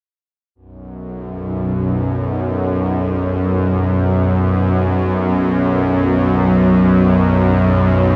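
Dark and cavernous, this ambient excerpt drifts in free time, holding a B5 chord from 0.6 seconds. A single bowed-like drone enters at 0.9 seconds and sustains low in the register, between B1 and F#2, until 8.2 seconds. Its sound is string-like and tense, a nasal, bright sawtooth tone in unison, joined by a layer of noise and a touch of vibrato. It rises through a slow attack and fades over a long release, sitting up front in the mix with its own built-in reverb. A huge, wet ambient space with a 7.9-second decay surrounds it and deepens the sense of a vast, shadowy chamber.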